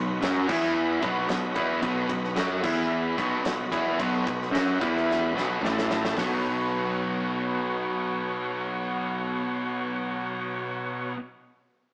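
A growly, punchy electric bass drives this swaggering, anthemic hard rock excerpt, backed by three picked guitar riffs: a crunchy overdriven part, a scooped, double-tracked high-gain part and a dark, sludgy one. A gritty tonewheel organ holds thick sustained chords through a slow rotary speaker, while a gated 80s kit with a punchy kick and bright cymbals plays from 0.2 seconds, adds a fill at 5.1 seconds and drops out at 6.3 seconds. The whole thing sits in a stone room with the rough, tube-saturated, small-speaker sound of a rehearsal-room recording.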